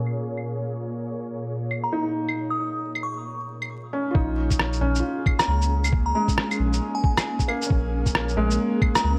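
Swung sixteenths at 135 BPM in 4/4 drive this nocturnal, melancholic future garage fragment in Bb minor, resting on a Bbm7 chord, with muffled, pitched-down claves, shaker and rim click sitting up front from the start as a filter sweep colors the opening. A felt-muted upright piano with audible action noise and tape echo and an ethereal, detuned pad with ensemble chorus both pump against the sidechain, while a crystalline FM synth bell carries the melody from 1.8 seconds, warbling through tremolo, chorus and tape echo. At 4.1 seconds a deep, round dub sub bass arrives, soon joined by a thumpy, compressed kick drum, and the track sits in a moderate digital room reverb with vinyl crackle and a low-pass filter.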